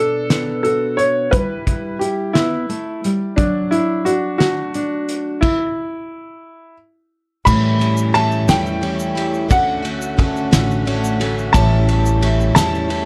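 Anthemic and warm, this indie folk excerpt in 6/8 opens with a woody, present upright piano carrying the melody over fingerpicked steel-string acoustic guitar and a loose studio drum kit with a fat snare, punchy kick and dark cymbals. The guitar drops out at 5.4 seconds, and at 7.5 seconds the arrangement builds as a thumpy, gut-strung pizzicato upright bass, a shimmering, octave-doubled twelve-string acoustic guitar with finger squeak, a soft flute-like tonewheel organ on sustained chords through a slow rotary speaker, and a grainy egg shaker tucked in the background all join. A very quiet felt-muted upright piano adds intimate accompaniment in the final stretch, with light reverb and tape saturation giving the whole a gently saturated glow.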